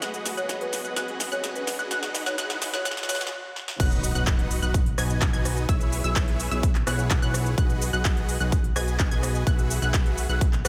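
A punchy, up-front electronic kick lands with the drop at 3.8 seconds, joined by a fat analog bass with pumping sidechain, driving this triumphant, anthemic festival progressive house excerpt. Above them a huge, thick, detuned supersaw riff pumps through a low-pass filter and dub echo, while a lush unison pluck arpeggiates high in the background and a tape-warm big-room drum kit with crisp hats and a punchy snare rolls through a build-up fill. Early on, a woody, buzzing marimba melody with dub echo and a background riser ending in an impact lead into the drop after a brief stop.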